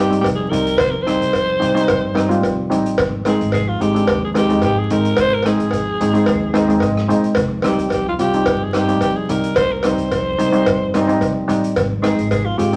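A growling alto saxophone carries the melody up front, its raspy, gritty tone eased by a soft attack, scooped notes, vibrato and a smooth top in a jazz-style solo. This cool, brooding calypso in C minor moves at 109 BPM in a straight 4/4, the harmony shifting between C minor and A-flat. A shimmering steel pan, played as double seconds with hard rubber sticks and sitting mid-forward, fills out the accompaniment and steps into a brief fill at 6.5 s. Beneath it, a woody pizzicato upright bass with steel strings gives a growly low end. A street-band drum kit with a boomy kick, hi-hat and rim click sounds airy and polished in a big room, joined by a metallic cowbell. Wet studio reverb and a layer of vinyl crackle color this short section, which is cut from a longer piece.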